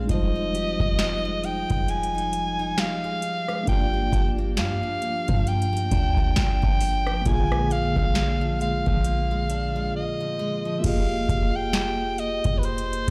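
Played back on a big sound system in a bare stone room, this late-night, sensual contemporary R&B excerpt has a dry, hard-walled sound, built on a booming analog drum machine with deep kick, crisp snare and metallic hats, and a boomy, sine-toned 808-style bass. A mellow tine electric piano accompanies, while a full-bodied jumbo steel-string acoustic guitar picks arpeggios through Fm9, Gm7 and Bb7, all beneath a bright, up-front soprano saxophone melody with vibrato and digital delay. After a break from 9.9 to 10.8 seconds the harmony settles on Fm11, and the guitar stops at 11.4 seconds.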